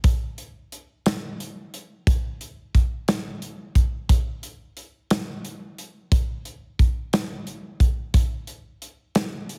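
A tender, heartfelt pop excerpt in a straight 6/8 metre, carried entirely by a modern acoustic drum kit playing hi-hat, kick and snare across its 9.6 seconds. The kit sits up front in a small room, with a punchy kick and a medium-tuned snare. Light reverb and heavy multiband compression give the whole a squeezed, radio-ready sound.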